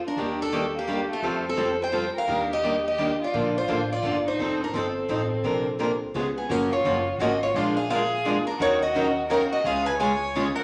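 A large, reverberant studio space and a layer of vinyl crackle frame this brief excerpt of acoustic string swing in waltz time, charming and playful with a lilting swung feel. A picked parlour guitar, bright and up front, carries the melody from the very start. A single bowed violin, rich and focused with vibrato, plays a second line beneath it. From 0.2 s two more picked steel-string guitars supply the accompaniment with fresh-string boxiness and audible finger squeak, one sitting near the front and the other very quiet, while a pizzicato upright bass adds a woody, thumpy low end. At 6.5 s the harmony shifts to F# major for a new section, and the ensemble plays on until the cut at 10.6 s.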